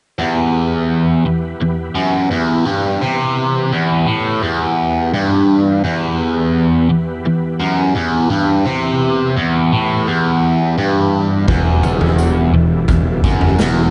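A straight 4/4 pulse anchors this trippy, hypnotic psychedelic rock excerpt, where a biting, double-tracked overdriven guitar riff with phaser sits up front over a thick, gritty tonewheel organ holding sustained chords through slow rotary speaker and chorus vibrato, a tense, string-like drone with vibrato joins at 1.5 seconds, and at 11.5 seconds a round fuzz bass and a punchy, saturated garage drum kit in a pumping stone room arrive, with a jingly tambourine following in the background, all within light small-room reverb.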